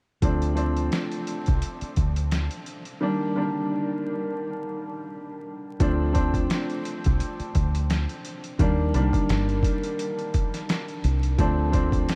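Gritty and dark, this boom-bap hip-hop clip moves at 86 BPM in 4/4 with a 56% swing on the sixteenths, cut from a longer piece. A sampler-style drum kit of kick, snare and hi-hat sits up front, compressed and pitched down, with a thumpy kick, a medium-tuned snare, overdrive and vintage 12-bit grit. Underneath, a deep dub fingered electric bass plays round, punchy, foam-muted lines between G1 and Eb2, while a woody, mellow upright piano, also up front, carries the accompaniment through a cassette-tape haze with its highs and lows filtered away. The harmony moves from Dm7 to Ebmaj7/D, then through Dm7 and Cm7 before returning to Dm7 at 11.4 seconds, with a break from 3.0 to 5.8 seconds. Light reverb and a layer of vinyl crackle give the whole clip a dusty, aged sound.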